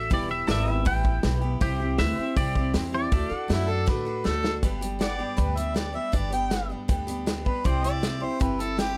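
Heartfelt and nostalgic, this 9-second honky-tonk and classic country cut in G major moves at a straight 159 BPM, with a clean, twangy electric guitar carrying the melody until 4.2 s over picked dreadnought acoustic guitar with finger squeak, a woody, thumpy upright bass, a punchy natural drum kit whose fill at 3.9 s leads into the second half, and a bright pedal steel holding sustained chords in the background, while a warm, lightly vibrato harmonica enters at 3.5 s and takes an up-front solo from 4.6 s, all captured dry with close, detailed microphones.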